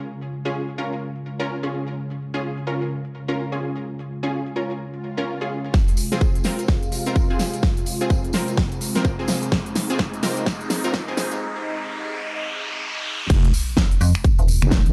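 A bright, evolving pad with chorus and vintage 12-bit sampler grit opens this bouncy, aggressive bass house excerpt, alongside bold orchestra-hit-like synth stabs carrying reverb and delay, both pumping under sidechain, while a big-room dance kit of huge snare, crisp filtered hats, finger snaps and crash cymbal joins just after. The swell, riser and sub drop effects enter at 4.9 seconds with a swell, and at 5.7 seconds a punchy, up-front electronic kick and a jingly tambourine in the background arrive as the build-up gathers a drum fill, riser and filter sweep. The drop lands at 13.3 seconds with a heavy, saturated wobble bass, joined briefly by an overdriven metallic FM bass, all within a dark, warm production with light digital ambience.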